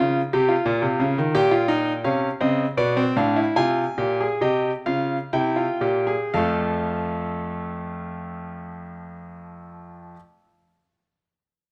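A brilliant, up-front concert grand piano with deep bass carries this serious, driving fragment of a baroque-style three-part fugue in 3/4, tuned to A4 = 436 Hz, slowing from about 0.3 to 6.4 seconds within a 56-89 BPM range as the harmony moves from Bbm through Dm13, Fm and C7 to settle on F, before a new section begins, all captured by close, detailed microphones in a moderate recital hall reverb.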